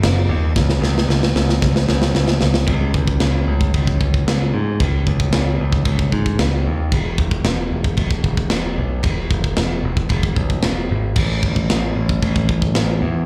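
Heavy and epic, this short heavy metal passage in C# minor drives along at 113 BPM in a straight 4/4 and is cut from a longer piece. A modern picked electric bass carries the low end, ranging from E1 to G#2 with a bright, punchy, direct tone placed up front. A tight metal drum kit plays beside it, heard as an acoustic kit in a big room, mid-forward, with a medium-tuned snare, a tight kick, and crash and china cymbals that ring bright. A drum fill runs from 0.6 to 2.7 seconds, leading the opening passage into the main section that carries on to the end. The performance comes from a live gig heard through the venue's PA, with a touch of club reverb around the sound.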